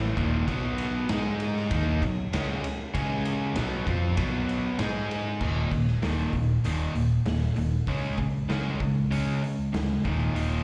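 A straight 4/4 pulse drives this heavy, menacing hard rock excerpt, caught live through a club PA: a bright, up-front cranked stack guitar with overdrive and a hollow-bodied semi-hollow guitar with slapback echo, sitting in the background, play riffs over chords such as Eb5, B5 and Ab5, while a round, dark fingered electric bass holds the low end and a gritty, saturated garage drum kit with a punchy kick and medium-tuned snare enters at 0.2 seconds, the mix carrying light club reverb as it shifts into a new section at 5.4 seconds.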